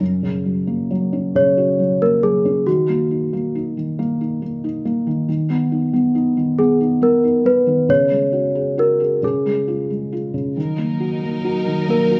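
A bell-like, sweet celesta carries the melody from 1.4 seconds over the soft, dark chords of a felt-muted upright piano with audible action noise, in this innocent, tender children's lullaby in F# major, which moves in a rubato 6/8 at 46 BPM within a moderate recital hall reverb, while a lush, woody string section adds sustained chords from 10.6 seconds in this short passage cut from a longer piece.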